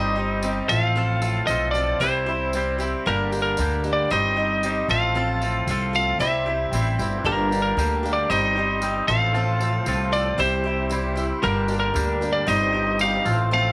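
A small room and a light reverb give this short cut from a longer folk rock and heartland rock piece an intimate, close feel, with a reflective, wistful mood at a steady 115 BPM in straight 4/4. Up front, a dark, slightly broken-up lead guitar carries the melody in a narrow range from Bb4 to F5, while a twangy, clean electric guitar bathed in lush chorus plays a riff beneath it. A bright, boxy acoustic guitar picks a swing-style accompaniment, and a woody upright bass, also close in the mix, anchors the low end. A jingly tambourine enters at 0.4 seconds, and at 6.9 seconds a fat tonewheel organ joins very quietly with sustained chords, its slow rotary speaker and key click adding gentle motion. The chords cycle through Cm/G, F/A, C and Gm, returning to Cm/G as the passage closes.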